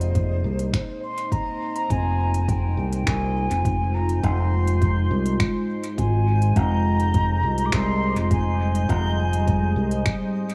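A hazy, meditative ambient dub excerpt in F minor at 103 BPM opens with a hollow, airy concert flute melody trailing dub echo over a deep, detuned sawtooth pad with chorus, while a reversed, granular texture drifts in the background and a growly, up-front fingered electric bass holds the low end. An overdriven electronic kit of finger snaps and crisp hats, sent through dub echo, is joined at 0.2 seconds by a layered, deep electronic kick that also carries overdrive, both re-recorded in a small room. The harmony moves from Abadd9/F to Fm7 at 1.9 seconds, and the passage sits in a moderate concert hall reverb.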